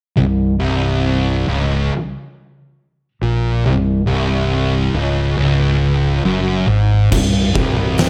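A moderate, large studio reverb surrounds this ominous, heavy stoner and doom metal excerpt, cut from a longer piece. From 0.2 s, a thick, dark, double-tracked fuzz guitar picks a low riff up front, with a growly, amped fingered electric bass underneath. An oversized low-tuned acoustic drum kit crashes in at 7.1 s with a punchy kick, fat snare, dark cymbals, hi-hat and a gritty, saturated, pumping stone-room sound.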